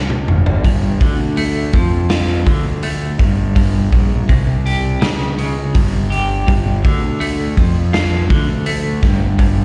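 A half-time 4/4 groove at 82 BPM opens with a drum fill in the first 0.6 seconds, launching an excerpt of cathartic, anthemic quiet-loud alternative rock that moves through D5, Gm and C5 chords. The raw garage kit sits up front with a punchy kick, medium-tuned snare, hi-hat and toms under a dark, rolled-off top, while the overdriven fuzz bass adds a round, low growl, and at 0.6 seconds a bright, twangy clean electric guitar enters with picked arpeggios colored by tremolo and slapback echo. The band is heard as a live gig through the venue's PA, wrapped in small-room ambience and recital-hall reverb.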